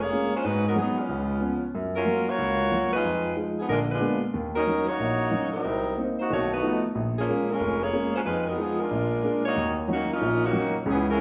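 A brisk 184 BPM swing in 4/4 drives this jazz fragment, cut from a longer piece, with a loose, swinging lilt on the eighth notes and a brassy mood. A bright saxophone section carries the melody from 0.0 to 11.2 s, playing in a loose, jazz-style section manner with light vibrato and a smooth top, sitting up front. Beside it, a clear concert grand piano supplies the accompaniment across the same span, its vintage character, deep bass and short sustain adding a crisp harmonic bed. The harmony stays in Bb minor, moving through chords such as Abm7, Gbmaj7, Bb7b9 and B7#11 before a new section opens at 9.6 s on Ebm7. A wet, large studio reverb is heard from further back in the room, giving the ensemble a spacious glow.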